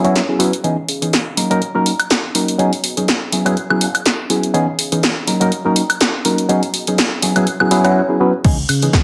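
Filtered disco house at 123 BPM in C# dorian, sensual and nostalgic with a light swing, where a reedy, up-front electric piano heard through its built-in speakers pumps behind a phaser and low-pass filter over chords from F#7sus4 through C#m7, D#m7 and B6, a very quiet, bright fingered bass with an envelope filter, and a punchy, overdriven analog drum machine of crash, hi-hat, snare and woodblock building up until a dry, overdriven electronic kick drum arrives at 8.4 seconds, all set in a wet plate reverb.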